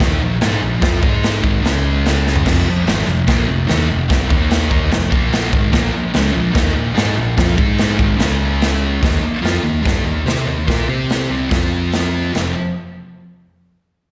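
Raw and swaggering, this garage rock excerpt sets a thick, double-tracked fuzz guitar riff with slapback echo up front over a round, dark hollow-body bass and a gritty, saturated drum kit with dark cymbals and a punchy kick, with a drum fill at 2.2 seconds, all heard live through a venue's PA with small-room ambience and recital-hall reverb.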